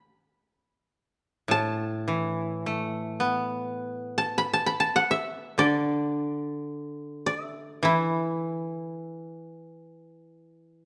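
A moderate recital-hall reverb with a decay of 1.7 seconds surrounds this brief excerpt of Japanese traditional chamber music. It is austere and calm, moving in free time within an E suspended pentatonic scale. One koto carries the melody from the opening, sitting up front with a mellow, woody, dry tone as it is plucked with fingerpicks between E4 and B5. A second koto enters at 1.5 seconds in a lower register, from A2 to B3, to provide accompaniment. It is also played with fingerpicks and sits up front, with a warm character and a slightly softer level than the melody. The accompanying koto rings on briefly after the melody finishes, closing the passage at 10.8 seconds.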